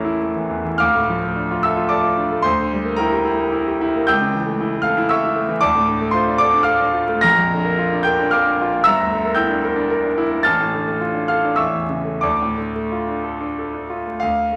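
Romantic classical character piece for solo piano in D minor, bittersweet and brooding, moving in a rubato 3/4 at 86-118 BPM as a bright, brilliant concert grand sits up front with deep bass across a range from G1 to Bb6, bathed in a wet recital hall reverb with vinyl crackle, its harmony circling through Em7b5/D, A7/C# and Bb before settling on Dm at 12.3 seconds in this short cut from a longer piece.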